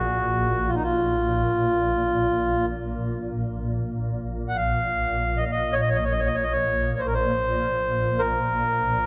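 Free-time and meditative in Bb minor, this haunting world excerpt pairs a reedy, close-miked accordion melody carrying analog delay, ranging from Eb4 to Gb5, with a shimmering, ethereal ambient pad drone on Bb1 treated with chorus, both sounding from 0.0 to 9.1 s in an echo-heavy mix bathed in a wet plate reverb.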